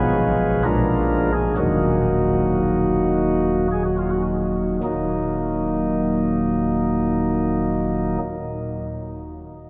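In a rubato 3/4 that moves between 49 and 71 BPM and slows through the first 4.8 seconds, this solemn, dark classical chorale in Eb minor unfolds on solo pipe organ, its soft flute stops carrying a baroque voicing with a chiff at each note's onset. The harmony moves from Fdim over Ab to Bb7 and settles on Ebm by 1.6 seconds, with a new section arriving at 4.8 seconds. The short fragment, cut from a longer piece, is heard from further back in a wet cathedral whose 6.5-second reverb lets every chord hang in the air.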